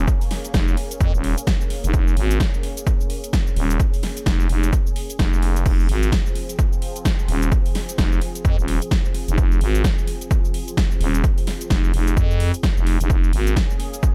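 The mix is dry and close, with little reverb, in a short, aggressive and gritty bass house passage cut from a longer piece. It runs at 129 BPM in 4/4 with a 60% swing on the sixteenths, in F minor and tuned slightly sharp to A4 = 441 Hz. An overdriven electronic kick sits up front, punchy and layered, re-recorded in a large room, while a big-room dance kit adds a huge snare, metallic hi-hats, shaker and crash cymbal captured in a small room. A growling, thick FM bass with a fast attack and tube saturation holds the low end from Eb1 to F2, pumping against the kick through sidechain compression. Underneath, a quieter sweeping resonant pad of detuned sawtooth and sine tones sustains chords with a slow attack, long release, filter swell and chorus, also pumping with the sidechain. The harmony moves from Bbm7 to Fm at 5.7 seconds and back to Bbm7 at 13.1 seconds, with the bass stopping at 13.5 seconds while the drums and pad carry on to 14.1 seconds.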